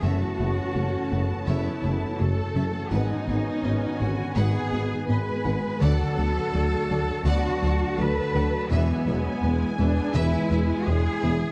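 Tense and relentless, this cinematic passage, cut from a longer piece, blends a symphonic orchestra with electronic textures in a straight 4/4 pulse over a brooding cycle of F#m7, G#m7, D and E chords. A lush, distant violin section carries the smooth, vibrato-rich melody high above, while a second violin section traces a silky line just beneath it and a focused viola section sits close but in the background with its accompaniment. The low end is heavy: a round, deep analog bass drives a dark square-and-sine riff, joined by an expressive cello section, a very quiet studio double bass section with soft attack and portamento, and a distant, roomy solo tuba. A French horn section holds classical-style sustained chords in the background, alongside a warbling, nostalgic, lo-fi tape-like pad whose detuned, slowly evolving chords come through very quietly. Threaded through it all is a very quiet, soft round pluck playing gentle decaying arpeggios with a touch of chorus, and the whole mix is bathed in wet scoring stage reverb for a dark production.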